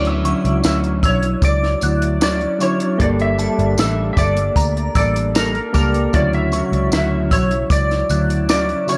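A clean lap steel guitar opens this dreamy, laid-back bedroom-pop excerpt, carrying the melody with slide and fingerpicks through analog chorus and tape echo, alongside a dark, fingered electric guitar treated with chorus and vibrato and soft, round electric-piano-like synth keys sitting in the background with a cassette-tape tint. A foam-muted, picked electric bass sits up front with a round, amped tone, and a compact cocktail drum kit enters at 0.1 seconds with a punchy kick, a high-tuned snare and hi-hat, its sound smooth and rolled-off in a small room. A glassy, crystalline FM synth bell joins at 0.2 seconds as a second line, warbling through chorus and tape echo high above, and a jingly, band-limited tambourine arrives at 0.6 seconds. At a relaxed 76 BPM in straight 4/4 and D major, the harmony drifts from Dmaj9 to Gmadd9 and back to Dmaj9. Light reverb and a touch of studio ambience give the mix a soft, hazy closeness.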